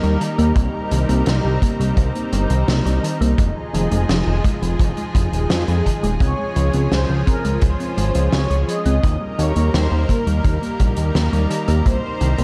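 Synthwave in F minor at 85 BPM with a nostalgic, cinematic mood, cut from a longer piece, where a lush, detuned unison pad with chorus and sidechain pumping holds sustained chords over a fat, up-front analog bass that pumps along, while a round, tine-like thumb-piano-like pluck with chorus, 12-bit sampler grit and delay plays arpeggios in the background, a distant, roomy indie kit with fat snare and hi-hat is joined by a punchy kick entering at 0.6 s, and from 6.2 s a smooth, mellow supersaw melody with sampler grit and delay plays over the Eb, Cm7, Fm7 and Dbmaj7 chords, all in a dark production with light studio reverb.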